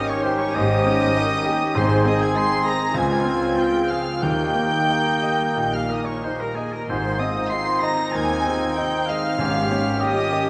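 A clear grand piano carries the melody in this lyrical, passionate classical passage in Ab major, its intimate tone sitting a little back in the mix with the sound of its action audible, while a chamber violin section also carries the melody high above with light vibrato and a sul tasto smoothness. The tempo moves freely in 4/4 between 88 and 102 BPM, and the harmony passes through Ab, Dbmaj7 and Eb before returning to Eb7 over Ab near the close. Around them, an airy, hollow flute, a distant, roomy oboe, a dark clarinet and a floating symphonic violin section weave gentle second lines. A lush, woody viola section and a bassoon with a smooth top fill in the accompaniment, while a French horn section with soft attack and a very quiet trombone section hold sustained chords, and a close-miked trumpet adds stabs. From 0.6 s a rich cello section and a dark double bass section anchor the bass, and timpani struck with soft mallets add a round, very quiet presence from 1.8 to 5.2 s and again near the end, all set in the generous bloom of a concert hall in this short excerpt from a longer piece.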